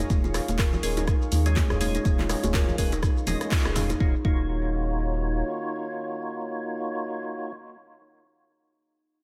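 An up-front, deep electronic kick drives this short, hypnotic afro house passage in Eb minor at 123 BPM, its 16ths swung at 57%, layered with a small-room deep house kit of handclaps, hi-hat, rim click, shaker and toms. Close, dry congas ring in the background while a very quiet, vintage djembe with metal rattles sits beneath them. The kit, congas and djembe stop at 4.0 seconds after a band accent at 3.5, while the kick carries on to 4.4 seconds. A round sine sub bass holds the low end and a woody, hollow kalimba spins thumbnail-plucked arpeggios through dub echo, both pumping against the kick. From 0.8 seconds a fat, clean tonewheel organ adds percussive stabs with key click, chorus vibrato, slow rotary speaker and analog delay, carrying on to 7.5 seconds as the harmony moves from Db over Eb to Ebm9. Underneath, a moody, detuned sawtooth pad with a sub octave swells slowly in the background with chorus and sidechain pumping, lending the echo-heavy, lightly reverberant mix a spiritual depth.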